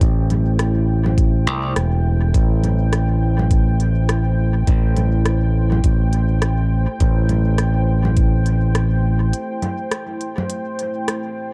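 Dark, close-sounding production with little reverb frames this deep, meditative ambient dub excerpt, built on a single Am7 chord with a loose sixteenth-note swing. A moody, warbling detuned pad sustains chords throughout, while a growly, up-front fingered electric bass with tube saturation and a muffled, thumpy sampled kick anchor the groove until the bass drops out at 9.3 seconds, the kick having stopped just before. A softer, tape-warm electronic kit of congas, smooth hi-hat and rim click, treated with dub echo, carries on into the closing break until 11.2 seconds.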